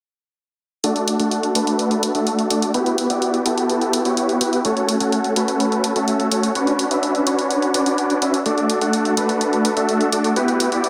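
A huge, bright supersaw lead sits up front in this festival progressive house passage, its detuned sawtooth unison voices carrying an anthemic riff that spans A3 to F#5. The lead has a fast attack and sustained, compressed tone, roughened by vintage 12-bit sampler grit and shaped by a low-pass filter and tape echo. An electronic hi-hat, layered and produced with a small room ambience, sits lower in the mix and runs alongside the lead from 0.8 to 10.9 seconds in a straight 4/4 feel. Underneath, the harmony moves through D, Emadd9, F#m and Bmadd9 before circling back to D and Emadd9. A lush hall reverb and a dense, heavily limited modern master give this euphoric cut from a longer piece a big, polished sheen.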